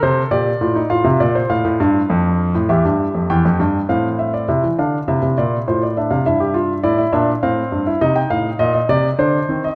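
A straight three-beat pulse at 101 BPM carries this short passage, taken from a longer baroque-style fugue in three voices for solo grand piano, tuned to A4 = 443 Hz. The mood is joyful and elegant, and the concert grand sounds intimate and natural, placed up front with a deep bass and the audible noise of its action. Spanning E2 to G5, the opening section moves through Bb, F/A, F and Em. At 4.5 s a second section begins on C7, then passes through Edim/G and Cm before settling on Cmadd9/D. A moderate scoring-stage reverb of 2.0 s gives the piano a gentle sense of space.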